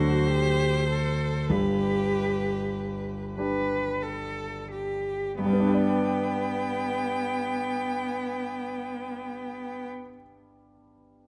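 Violin, cello and piano open together in this serene, tender slow romantic movement for piano trio in G major, heard as a fragment of a longer piece, drifting in a rubato 6/8 at 28-35 BPM that slows over the first 5.4 seconds as the harmony moves from D to G, with a rich, expressive violin melody sung with vibrato and portamento, a focused, up-front cello second line, and a warm, deep-bassed concert grand accompaniment that lingers alone after the strings stop at 9.9 seconds until 11.3 seconds, all captured close and detailed in light reverb.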